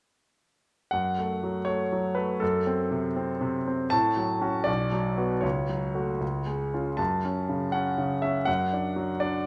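An up-front concert grand with a polished, intimate sound and audible action noise rings through a recital hall's moderate reverb, its deep bass and long sustain filling the space. This stormy, agitated classical piano study in 6/8, cut from a longer piece, moves with a free rubato feel as the solo piano plays from 0.9 to 9.5 seconds across a range from B1 to A5. The harmony darkens through a diminished chord before passing through minor and major chords back to the home minor, ending on a major chord over the bass.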